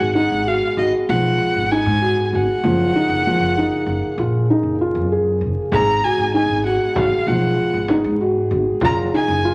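Contemporary chamber music in an uneven 5/4 at 97 BPM, restless and hypnotic, cut from a longer piece and moving between Abm7 and Gbmaj9. A rich, vibrato-laden solo violin carries the bowed melody up front over soft arpeggios from a felt-muted upright piano, with a dark, distant French horn section holding chords in the background and a woody pizzicato upright bass underneath. A deep frame drum joins quietly at 5.7 seconds, and the whole sits in a wet recital hall reverb with a layer of vinyl crackle.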